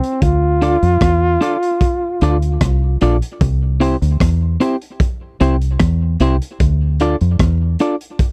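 A relaxed, straight 4/4 groove at 75 BPM anchors this brief roots reggae passage, carried by a crunchy breakbeat drum kit of hi-hat, kick drum and rim click that sounds dark and saturated, with a punchy kick and a rolled-off top. A deep dub fingered electric bass joins at 0.2 s, round and foam-muted, sitting low between Bb1 and F2 and standing out as the strongest part of the mix. A trombone with vibrato and a smooth top sings the opening melody between C4 and F4, then falls away at 3.0 s. Picked electric guitar at the edge of break-up, compressed and slightly broken-up, supplies accompaniment from C4 to D5 over a laid-back progression of Dm, C and back to Dm. The sound is dry and close, like a 1970s studio session, with every part up front and little reverb, and the passage is cut from a longer piece.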